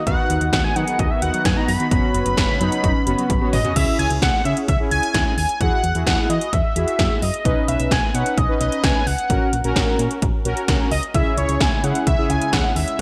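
Upbeat and nostalgic, this 13-second excerpt of synth-pop moves at 130 BPM in a straight 4/4, with a bright 1980s-style digital sheen and a moderate plate reverb. Up front, a bold, retro octave-doubled lead carries the melody throughout, its detuned sawtooth tone treated with chorus, phaser and digital delay and colored by vibrato. Beneath it, fat, brassy analog synth brass plays accompaniment, while a solid FM bass gives a punchy, round low end. The electronic pad drums sit forward in the mix, with a punchy kick, metallic hats, crashes and a gated snare and toms, and a drum fill at 3.3 seconds leads into a new section at 3.8 seconds. A very quiet, soft pluck arpeggiates and a smooth, warbling pad holds lush chorused chords in the background through the opening seconds, with the pad returning at 11.1 seconds as the chords move from C#m through Eadd9, Badd9 and F#/A# back to C#m.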